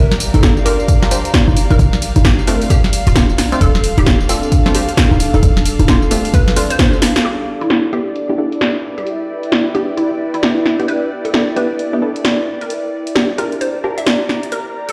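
This moody, skippy two-step garage cut opens with a hollow, detuned square-wave pluck carrying the melody over two pads: an airy, breathy one holding sustained chords with a vintage warble, and an ethereal, mellow one drifting as texture through ensemble chorus and reverb, both pumping against the sidechain. The pluck is bouncy and bathed in chorus and tape echo, while a tight, sine-based 808-style bass and a tape-warm electronic kick anchor the low end. An up-front analog drum machine adds congas, hi-hat, a punchy snare and tambourine, all softened by low-pass filtering, and its 16ths swing at 132 BPM in 4/4 in E phrygian over Gm7, Dm7 and Em7 harmony. Bright sawtooth chord stabs cut in with a phaser-streaked, cassette-worn bite. The bass and kick fall away before a drum fill at 7.0 s and a band accent at 7.1 s, after which a filter sweep rides the stabs from 7.2 s. Everything sits in a moderate plate reverb and the reverberance of a bare stone room in this fragment of a longer piece.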